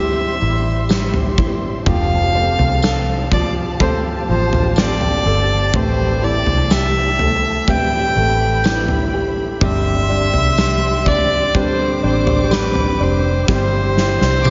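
Moving in a straight, slow 4/4 at 62 BPM, this heartfelt, hopeful pop ballad in C major sets a nasal, earthy solo violin with slapback echo over clear baby grand piano, lush background string chords, fingerpicked nylon-string guitar arpeggios with digital delay and a round, foam-muted electric bass, with a huge arena drum kit with punchy kick and a jingly tambourine entering at 0.9 s, a drum fill arriving at 13.5 s, a rich violin section touching a single high note at 14.4 s, and a lush hall reverb giving a big arena sound with a soft top.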